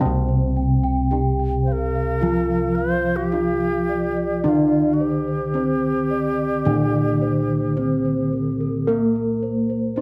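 Ceremonial and shimmering, this slow gamelan fragment at 54 BPM in C slendro layers a mellow bronze metallophone melody over a ringing metallophone accompaniment, with softer high metallophone arpeggios and round, vintage-toned bossed gongs carrying the bass, while an airy, bright xiao with vibrato adds a second line from 1.6 to 8.9 seconds, all captured by close, detailed microphones in light reverb.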